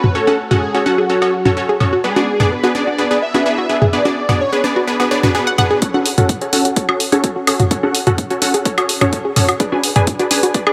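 A thick, detuned sawtooth unison lead carries the melody of this expansive, driving progressive house excerpt in F# minor at 127 BPM, riding on sidechain pumping and delay before it drops out at 5.6 s. Around it, a round analog pluck spins arpeggios and airy supersaw stabs punch up front through a low-pass filter, while electronic toms, congas and woodblock keep up percussion over F#m and G#dim chords. A very quiet swell leads into the build-up at 5.8 s, where an overdriven, punchy kick and high-passed electronic hi-hat and woodblock join as filter sweeps move across the pluck and supersaw, all in light reverb.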